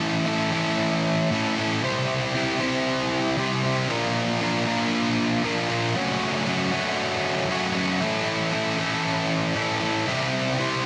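Bittersweet and cathartic, this short rock cut from a longer piece moves at 116 BPM in a straight 4/4, with a lone sludgy, overdriven electric guitar, picked, double-tracked and up front with slapback echo, ringing through a lush hall reverb and a big arena sound as the chords move from A through C, Bb and F#m before returning to A and C by 10.1 seconds.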